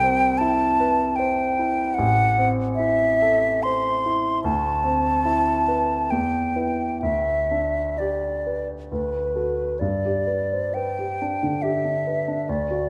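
Heard in a moderate recital-hall reverb, this serene, lyrical romantic classical duo in G major, tuned to A4 = 438 Hz, unfolds in a rubato 3/4 at 60-78 BPM, with a close-miked, pure and hollow silver concert flute singing the tongued, vibrato-tinged melody up front over a polished grand piano accompaniment, while the harmony passes from Cmaj7 through Am, Dsus2, Em, G/D and D before arriving on G at 9.8 seconds in this passage cut from a longer piece.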